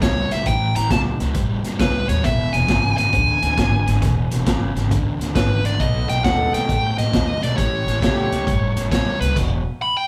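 Gritty and rollicking, this swung electric blues shuffle sets a dark, up-front overdriven lead guitar over a crunchy riffing guitar with tremolo, a woody pizzicato upright bass and a saturated breakbeat kit with a punchy kick, while a mellow jazz horn section adds octave-doubled stabs from 5.8 s, the band playing live together in one room inside a large, wet studio reverb.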